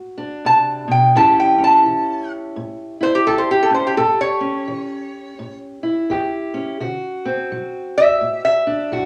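A home cassette recording with a small-room ambience carries this soulful, rollicking acoustic country blues at 85 BPM with a swung feel in A mixolydian, where a dark, boxy fingerpicked parlour steel-string guitar lays down the D7 to A7 accompaniment from the start while a metallic, nasal lap resonator guitar, played with slide and fingerpicks, enters at 0.5 seconds to sing the melody up front.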